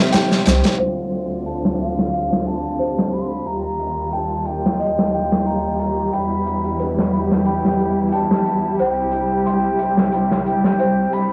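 A blown-out, overdriven and muffled recording with light studio reverb carries this hypnotic, melancholic trip hop passage in D dorian at 90 BPM, moving through Dm7, Ebadd9, Em and C. A crunchy, gritty breakbeat kit with a medium-tuned snare sits up front beneath lush, bright bowed strings holding chords, while a breathy, hollow jazz flute with sampler grit and tape echo carries the melody and a delicate, bell-like celesta plays filtered arpeggios under a filter sweep. A faint egg shaker appears only from 0.1 to 0.8 seconds, a round sine sub bass sounds briefly at 0.5 seconds, and a reversed, dreamy, detuned swelling texture drifts in the background from 1.9 seconds.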